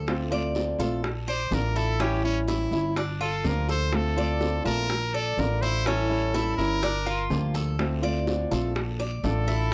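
A brilliant, punchy trumpet takes the solo up front from 1.3 seconds, singing with vibrato and scooped notes in a forceful pop style over a nostalgic Cuban son and guajira groove that cycles through Dm7, Bbmaj7, A7 and Gm7. Beneath it, a woody, thumpy pizzicato upright bass on gut strings sits up front, while a fingerpicked flamenco guitar provides accompaniment and a metallic, double-strung Cuban tres plays picked arpeggios. Round, low-tuned bongos and a raspy guiro tick along in the background, all captured in a dry, close 1970s-style studio sound in this piece cut from a longer performance.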